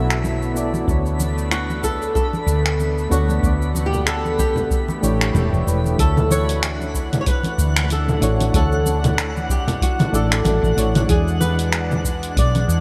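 A fingerpicked flamenco guitar carries the melody from 1.5 s, draped in lush chorus and delay, over a smooth, relaxed sunset chillout groove with a gentle swing: round, up-front woody fretless bass, soft electric-piano-like synth keys, mellow with chorus and tremolo, a thick, warbling unison pad in the background, a twinkling granular texture, a deep analog electronic kick, a tape-toned deep house kit of cabasa, finger snaps, hi-hat and toms, and soft-handed acoustic congas, heard in a moderate hall reverb with a bright 1980s-style digital sheen.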